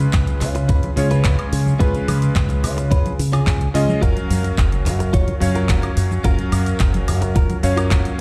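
Groovy and feel-good, this short nu-disco excerpt in F# major moves at 108 BPM in a straight 4/4, shifting from C#7 to F#maj7 at 4.0 seconds. A thumpy, sampler-style electronic kick leads the mix over a round, punchy fingered electric bass with an envelope filter, while an overdriven, layered pop kit of handclaps, hi-hat, shaker and woodblock sits beside very quiet, ringing congas and cabasa. A clangy vintage electric grand piano with sidechain pumping and tape echo carries the accompaniment, and from 0.5 seconds a bright, compressed, direct-recorded clean guitar riff with subtle chorus and tape echo joins in.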